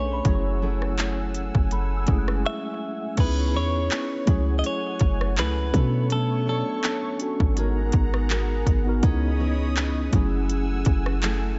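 This contemporary R&B excerpt opens with a mellow tine electric piano, a fingerpicked nylon-string guitar in the background, a smooth, detuned sawtooth pad with chorus, a deep, boomy 808-style bass and a delicate, bell-like celesta, while a bright, twangy clean electric guitar carries the melody. The mood is sensual and late-night, at 82 BPM in 4/4 with a light swing on the sixteenths, moving through minor ninth chords that return to F#m9. A trap drum kit sits up front with a hard-clipped kick, crisp hi-hats, handclaps, rim clicks and crash cymbal, and the groove pauses for a short break at 2.4 seconds. The celesta stops at 4.6 seconds and the electric guitar at 7.2 seconds, leaving the piano, nylon guitar, pad, bass and drums to carry on. Analog delay on the two guitars, the electric piano and the celesta makes for an echo-heavy but dry mix with a rolled-off top end.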